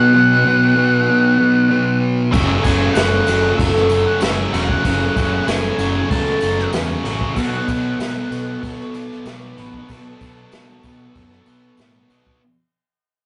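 A straight 95 BPM 4/4 pulse of brushed drums, with a boomy kick and dark cymbals plus a very quiet jingly tambourine, enters at 2.3 s in this blissful, hazy shoegaze and dream pop rock piece. An octave-fuzz lead guitar carries the melody over a thick fuzz guitar riff from the start, and they are joined by shimmering octave-doubled twelve-string acoustic arpeggios, a crunchy overdriven guitar, a bright double-tracked tight distorted guitar and a growling, punchy fingered bass over F#m7 and Bm7, as the music fades out through a rough, saturated rehearsal-room sound coloured by wet studio reverb.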